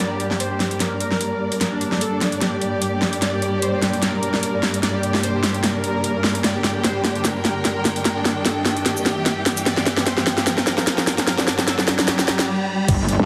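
Heavily compressed, radio-like and set in a moderate, lush hall reverb, this menacing heavy wobble dubstep build-up sets a smooth, detuned supersaw melody with tape echo against distant bowed strings that pump under sidechain. Meanwhile, an up-front dubstep kit with a huge snare and metallic hats runs a drum fill over a background riser until a stop at 12.5 seconds, and at 12.9 seconds an impact lands with a knocking electronic kick and a distorted, aggressive FM wobble bass on a low G that hits louder just as the cut ends.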